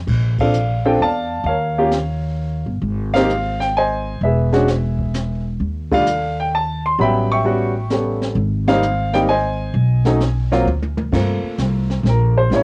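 A jazz piano trio excerpt in a swinging 3/4, smoky and cool, cut from a longer piece and captured as a home recording on cassette with little reverb. The upright bass opens the clip, plucked and woody, its gut strings giving a thumpy, up-front low end, with the brushed drum kit joining at 0.1 seconds: dark cymbals, a high-tuned snare and a boomy kick, softened by tape and a rolled-off top. The baby grand piano carries the melody from 0.4 seconds, natural and close, moving through lush major-seventh and thirteenth harmonies. The band lands together on accents through the opening stretch, and a drum fill bridges into a brief piano solo at 11.1 seconds over a minor eleventh chord. The intimate, dry sound gives the trio a late-night, living-room feel.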